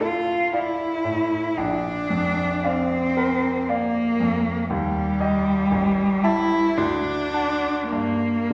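A rich, bowed cello carries the solemn, yearning melody up front, its soft attack, expressive vibrato and portamento colouring a line that sits between G3 and F4. Beneath it, a bright, brilliant grand piano with short sustain supplies the accompaniment across a broad span, moving from D minor through B-flat and E-flat toward D and G minor. This romantic classical duo passage, cut from a longer piece, unfolds in a slow 3/4 at 51-60 BPM with rubato, set in the lush reverb of a church or concert hall.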